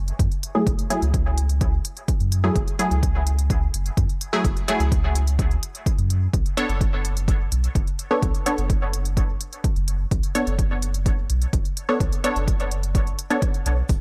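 A hazy, cavernous dub techno excerpt with little reverb and a close, dry sound, moving at 127 BPM in a straight 4/4. A deep, round sub bass with a soft, mellow tone sits up front from the first second, ranging from F#1 to F#2 and pumping against the sidechain. A punchy electronic kick and smooth, layered hi-hats carry the beat, with the kick placed up front and both having the character of a small room. Filtered dub chord stabs enter at 0.5 seconds, detuned and plucky with a fast attack and short decay, treated with chorus, phaser, sidechain pumping and dub echo as they move from F#m9 to Bm9 at 6.3 seconds. A grainy, band-limited tube shaker appears only at 13.9 seconds, very quiet, just before the cut.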